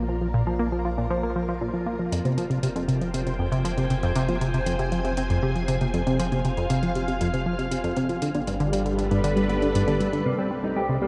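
Bathed in a huge ambient reverb with a dark production, this brief excerpt of mysterious, cosmic sequencer-driven space music in F dorian at 118 BPM sets a tight, detuned sawtooth synth riff with filter plucks over a deep, round sine sub bass and lush, vintage string-machine chords that fade in with ensemble chorus and shimmer reverb, while electronic hi-hat and congas with metallic hats and delay enter at 2.1 seconds and a clean, fingered electric guitar adds dark arpeggios at 10.3 seconds as the chords move from Bb through Fm and G7 to Cm.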